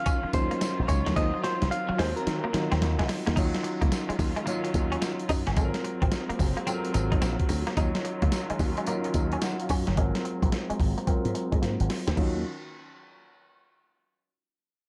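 A swung sixteenth-note groove at 109 BPM in 4/4 drives this punchy, confident new jack swing excerpt in E-flat dorian. Up front, a dusty, sampler-style drum kit with gritty overdrive pairs a thumpy kick and a medium-tuned snare with hi-hat, crash and tambourine, and it plays fills in the opening bars and again just before the close. A bright, punchy slap bass with an envelope filter sits beneath. A low-passed grand piano with deep bass accompanies, while a distant, bowed string section with vibrato and a soft attack holds the Ebm9 and Ab13 harmony in the background. A hollow-bodied electric guitar with ensemble chorus repeats a clean, picked riff throughout, and a twangy, direct-recorded guitar carries the melody only until 3.0 seconds. A filter sweep runs from 3.4 to 12.2 seconds in a dry, dark, warm mix.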